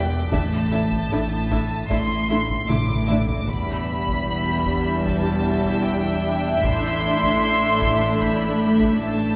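Dark, woody violas carry the accompaniment in this ominous, tense cinematic suspense cue at 76 BPM, as a close, intimate chamber violin section sings the sul tasto melody above a floating, high symphonic violin texture and a soft-attack second violin line, while cellos and double basses hold the low end in the background alongside a deep, rumbling, detuned drone, a felt-muted upright piano glints very quietly until 3.5 s, and a background taiko ensemble struck with hard sticks plays a fill at 2.7 s, moving between Asus4 and Em7 in a reverberant hall with lossy compression artefacts.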